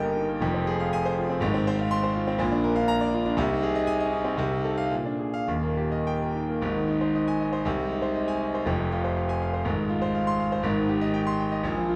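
In a rubato 2/4 pulse moving between 103 and 125 BPM, this heroic, brilliant excerpt from a classical virtuoso piano study features a solo concert grand with a clear, up-front tone, deep bass and long sustain spanning Eb1 to C6, set in a wet recital hall reverb, shifting from Eb major to Ab major at 6.6 seconds, where the harmony moves through Ab and Fm toward a closing Abmaj7.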